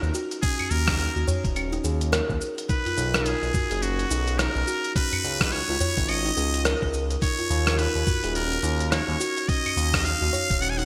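A straight-muted trumpet leads this organic downtempo excerpt in Eb minor at 106 BPM with a 16th-note swing, its nasal, raspy, growling melody sitting up front over woody, ringing kalimba arpeggios, each carrying digital delay, while a smooth detuned sawtooth-and-square synth bass with tube saturation and sidechain pumping anchors the low end. A gritty, tape-warm sampler-style kit of claves, hi-hat, rim click and shaker with gated reverb runs throughout, joined by a thumpy electronic kick drum from 0.4 seconds and a small udu tucked in the background from 0.6 seconds. The warm, mystical mood is set in a lush hall reverb with a bright 1980s-style digital sheen, as the harmony moves through Eb7, B and Db5 chords.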